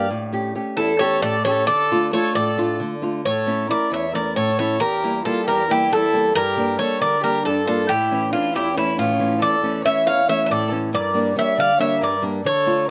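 A metallic, double-strung Greek bouzouki leads this driving, dramatic Greek folk piece in 7/8, its picked melody set up front with some octave-doubled strings ringing through. A single bowed violin floats an airy, pure second line with a soft attack, while a small, fingerpicked nylon-string guitar sits close in accompaniment, moving through chords such as A7, Dm, Edim and Gm as the band gradually speeds up and shifts into a new passage at 3.2 s. The sound is dry and open-air, with little reverb.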